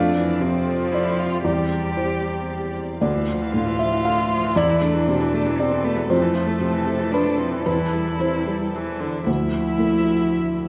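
A rubato 3/4 lilt at 116 BPM carries this intimate, hopeful neoclassical piece for piano and strings, where a mellow, felt-muted upright piano sits up front with audible action noise, a close solo cello bowed sul tasto with light vibrato carries the second line, a single viola with an airy bow adds soft accompaniment, and a dark, smooth-topped studio string section holds sustained chords beneath, in a wet recital hall reverb as the harmony moves through Fmaj7, C/E, Dmadd9 and Amadd9/E.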